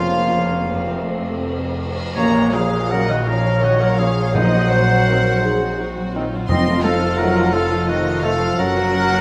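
This is an elegiac, solemn slow movement for symphony orchestra in Bb minor, cut from a longer piece, moving at 56 BPM in 6/8 with uneven, rubato beats. From the opening, a violin section carries a floating, pure melody high in its range, bowed sul tasto with a soft attack. Around it, a warm solo oboe sings a second line, a quieter violin group adds a close, intimate inner voice, and a distant, mellow clarinet is heard only until 1.5 seconds. Dark, woody violas fill in the accompaniment, while French horns and trombones hold sustained chords in the background, and the trombones fall away at 8.4 seconds. A ringing, fingerpicked concert harp traces very quiet arpeggios over a deep foundation of dark cellos and double basses, with timpani struck crisply with hard mallets. At 2.2 seconds the band lands an accent as an airy, hollow small flute group joins on a second line and a dry tam-tam sounds briefly, all set in a moderate concert hall reverb as the harmony passes from Bbm through Cdim/Bb and F7 to a closing Gb.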